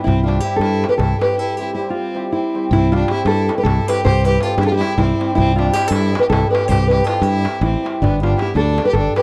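Balkan folk in a wedding-band style, this virtuosic, exuberant excerpt in 7/8 is led by an up-front, thumb-plucked nylon-string guitar carrying the melody, with a single bowed violin adding a rich, smooth second line full of vibrato. A shimmering, hammered cimbalom rings out the accompaniment, a metal-shell darbuka struck with hard hands gives crisp, deep percussion, and a direct, fingered electric bass sits prominently from 0.1 s to 9.1 s. The dry, close 1970s-style studio sound carries light reverb, and a break at 1.4 s gives way to a fresh statement of the opening section at 2.7 s.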